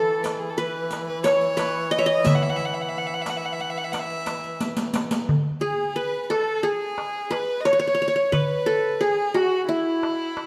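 Turkish makam ensemble music in makam rast on E, passionate and warm in mood, moves at 178 BPM in eighth notes through a straight 9/8, tuned to A4 = 439 Hz and cut from a longer piece. The plectrum-plucked qanun carries the melody up front, its triple strings giving a bright-edged sound. A single bowed violin plays a rich second line close by, with light vibrato, a soft attack and an airy sul tasto tone. Beneath them a distant duduk holds a drone on E3 in folk style, with vibrato and scooped notes, until about 5.4 seconds. A riq with dark jingles enters first, with the crisp, high metal-shell darbuka coming in a moment later, both struck with hard hands. The riq drops out around 5.3 seconds while the darbuka carries on to the end, and a drum fill from 4.6 to 5.3 seconds leads into the second section. A moderate concert-hall reverb surrounds the ensemble.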